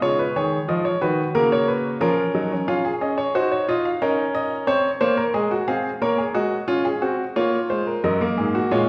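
Serious and solemn, this short cut from a longer baroque-style four-part fugue in 4/4 sets a clear, intimate baby grand piano alone and up front, its natural tone carrying long sustain and audible action noise, while a wet recital hall reverb places the listener further back in the room.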